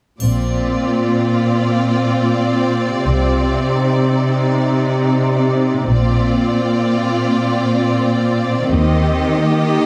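Heroic and majestic, this short passage from a longer cinematic orchestral film score unfolds in free time in Bb major, building steadily across its roughly ten seconds. A clear, distant violin section carries the melody high above, while a second violin section, close and smooth, plays a second line beneath it. A focused viola section fills out the accompaniment, and the lower strings sit up front: a rich, even cello section and a double bass section whose expressive bowing includes touches of portamento, the basses dropping out at 9.2 seconds. A faint triangle sounds only in the opening second, from 0.2 to 1.1 seconds. The harmony moves from Bbadd9 to Cmadd9, back to Bbadd9, and arrives on Eb at 8.7 seconds, all set in a moderate scoring-stage reverb with a dark, warm production.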